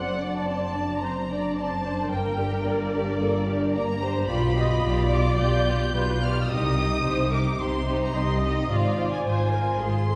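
Set back in a wet concert hall, this urgent, dramatic fragment of a quick classical-period string orchestra movement has the focused first violins singing the high melody with vibrato over an even, smooth second violin line, lush violas filling the accompaniment, close-sounding cellos and rich double basses anchoring the bass, and the harmony shifting toward C minor from 4.3 s.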